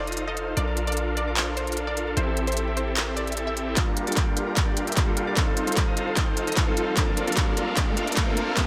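Lush and dreamy, this future bass excerpt moves at 150 BPM in a half-time 4/4 feel, tuned to A4 = 443 Hz, with huge, detuned supersaw chords pumping up front through a low-pass filter and delay, a bright sawtooth pluck melody with dub echo and a ringing fingerpicked concert harp sitting in the background, and a deep, boomy 808-style bass carrying the low end until 3.8 s. A trap kit with crisp hats and handclaps sits up front from 0.1 s, and at 3.8 s a clear grand piano and a punchy, layered electronic kick join as a build-up begins, with a drum fill and a filter sweep on the supersaw. From 5.3 s an electronic riser enters in the background, while across the excerpt the chords move from F7 through Bbmaj7, Am7 and Gm7 and back to F7 and Bbmaj7, all wrapped in light digital ambience.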